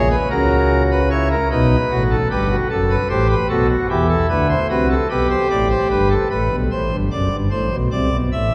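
A pipe organ sounding a nasal cornet stop with a romantic voicing sits up front and plays alone through this contemplative, serious fragment of a baroque-style three-part fugue, spanning F#1 to E5 in a slow 12/8 at 50 BPM. The harmony moves from F#7 and B7 to E minor, then shifts to A minor at 6.3 seconds as a new section begins. A long, wet church reverb surrounds the organ, giving the lines a spacious, resonant halo.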